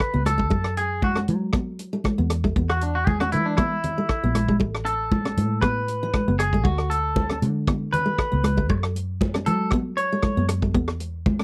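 A dry, close 1970s-style studio sound frames this warm, carefree highlife guitar band excerpt at 117 BPM in 4/4, where a bright, twangy clean electric guitar plays up-front arpeggios with a warbly pitch drift and slapback echo until 10.5 seconds over a fingerpicked steel-string acoustic guitar, a dark, round, foam-muted vintage bass, a tight soul drum kit of hi-hat, kick and rim click, and thin-skinned congas entering at 0.3 seconds, moving through D5, F#m7, E5 and Asus2 chords.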